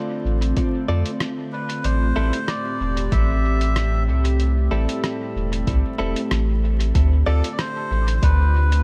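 A round, up-front dub sub bass anchors this hazy, spacious ambient dub excerpt at 94 BPM in D dorian, beneath a warbling, nostalgic pad of sustained Dm7 and Am7 chords, clean, direct-recorded electric guitar stabs treated with spring reverb and dub echo until 7.5 s, a deep, tape-warm electronic kick, muffled, pitched-down sampler hi-hat and rim clicks with dub echo, and a reedy, breathy melodica melody entering at 1.5 s, all over a bed of vinyl crackle.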